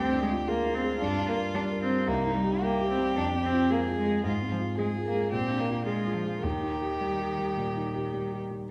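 This quick classical-period movement for piano trio, cut from a longer piece, is graceful and spirited, with rubato lending the beats an uneven, breathing pulse. A rich, bowed violin carries the melody in a smooth, even line with vibrato. The cello sings a second line beneath it with its own vibrato and sits up front. The dark, mellow grand piano supplies the accompaniment from the low bass upward, with a vintage, intimate character and audible action noise. The harmony moves from a diminished chord through a chain of minor chords to a dominant seventh and settles on its home chord. A wet scoring-stage reverb surrounds the trio; the strings stop at 8.4 seconds, and the piano rings on to 8.7 seconds.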